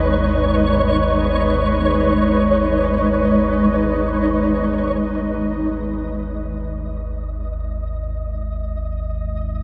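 This dark ambient drone piece moves in free time with an ominous, vast mood, tuned to A4 = 441 Hz and cut from a longer piece. A deep, rumbling drone sits low and up front, its dark, nasal, ring-modulated tone touched by subtle chorus and its own reverb. Above it, a cloudy, full-bodied granular pad holds blurred, evolving chords on G# minor until 5.0 s, when the harmony settles onto a bare G#5. A flickering, grainy texture hovers high throughout, and a synth texture fades in over the closing seconds. From 5.2 s a very quiet, eerie FM bell adds inharmonic arpeggios on a single D#4. Everything is steeped in a cavernous cathedral reverb whose long tail stretches the sound into a dim, enveloping space.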